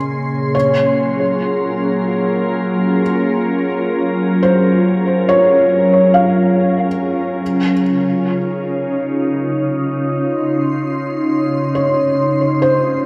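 The music moves in a straight 4/4 at 70 BPM, an unhurried ambient fragment cut from a longer piece whose mood feels weightless and gently warm. A glassy FM pad, up front and carrying its own ensemble chorus and built-in reverb, holds sustained chords from Bb2 to C6 with a slow attack and long release, its vintage tone warbling and ethereal. Beside it, a felt-muted upright piano plays soft, intimate arpeggios between C5 and F5 through an analog delay, its short sustain leaving the audible action noise close to the ear. An analog drone sits in the background only until 0.6 seconds, a nasal, evolving sawtooth and pulse-wave tone with pulse-width modulation and chorus. The harmony passes from Bbm9 to Gbmaj9 and settles on Dbmaj9 at 7.4 seconds, all within a wet plate reverb of 3.5 seconds and an echo-heavy mix that keeps the space hazy and mellow.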